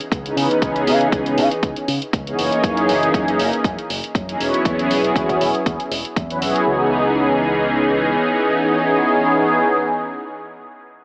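A swung 4/4 nu-disco groove at 119 BPM in C# dorian, this cosmic, sensual excerpt opens with a punchy, overdriven electronic kick and bright hi-hats in a small room, a bright fingered electric bass with an envelope filter pumping beneath them until 8.1 seconds, while an up-front, smooth, detuned sawtooth analog pad with chorus, dub echo and sidechain pumping drifts through C#m7, F#13 and E6 and carries on alone to 9.7 seconds, all bathed in lush hall reverb and an AM-radio tone.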